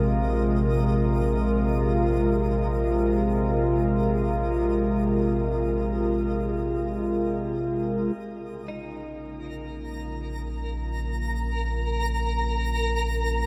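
Floating in free time, this serene, spacious ambient piece centres on a warbly, nostalgic tape-like pad up front. The detuned, lo-fi pad holds sustained chords through chorus and shimmer reverb, over a deep, round sub bass and a twinkling granular texture that sparkles with an octave-up shimmer. A synth texture fades out across the opening, and the harmony moves from Fm/Bb to Bbm at 8.2 seconds, after which a bright, twangy twelve-string electric guitar in the background picks brief arpeggios through tape echo from 8.7 to 10.9 seconds, all within a vast, echoing space with a long, wet cathedral reverb.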